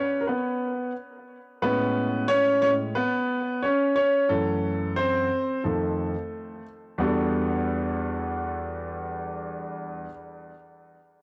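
A lone concert grand piano, intimate and up front with audible action noise and deep bass, plays mellow, cool hip hop at 89 BPM in E dorian with a swung 16th feel, moving from Amaj9 at 1.6 s through F#m7b5 and F7 to a closing Em11 at 7.0 s, its tone shaded by cassette tape and tape echo in a small, lightly reverberant room across this 10.1-second excerpt cut from a longer piece.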